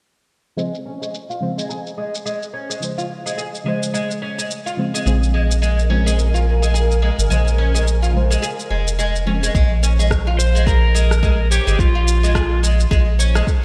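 An up-front, round analog bass anchors this meditative organic downtempo excerpt at 107 BPM in Bb minor, where a woody, plectrum-plucked oud spins filtered arpeggios beside a deep, chorused chord stab over a filtered electronic shaker and rim click. An ethereal pad drifts in the background before a layered electronic kick arrives at 9.5 seconds as the harmony moves from Bbm7 to Bb7(no3), and a dark, overdriven slide guitar melody enters at 10.4 seconds, all set in a lush hall with bright 1980s-style digital polish.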